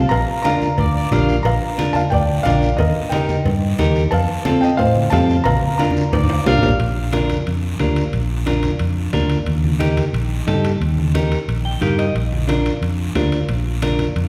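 An excerpt of festive, danceable cumbia at 179 BPM in Bb major opens with a soft, felt-muted upright piano carrying the melody until 6.6 seconds over a round, up-front fingered electric bass, bright low-tuned congas in the background, ringing cowbell and timbales, a raspy close guiro and a twangy, picked clean electric guitar, while a clear trumpet with light vibrato adds brief punchy phrases, a drum fill arrives at 5.5 seconds and the guitar takes a fill at 11.5 seconds, all set in the reverberant space of a recital hall.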